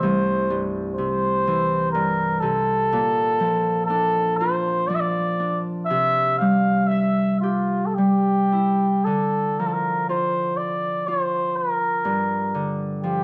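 A cup-muted trumpet and a ringing, fingerpicked Celtic harp begin together in this mournful, longing Celtic slow air in 3/4. The trumpet sings a veiled, distant melody in a classical style, while the harp supplies warm accompaniment across a broad range. Both sit up front in a dark production with a moderate recital-hall reverb, and the rubato phrasing gives way to a new section at 9.1 seconds before the fragment is cut off at 13.2 seconds.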